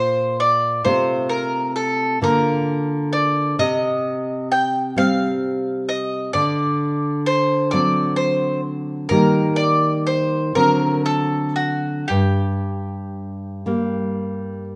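A bowl-back mandolin carries the yearning, solemn melody up front, its picked double strings giving a warm voice from the opening through 14.6 seconds. Beneath it, a nylon-string guitar with warm fresh strings provides fingerpicked classical accompaniment in a rubato 6/8 feel, ringing on to 14.8 seconds. This romantic duo fragment, cut from a longer piece, sits in the moderate reverb of a recital hall.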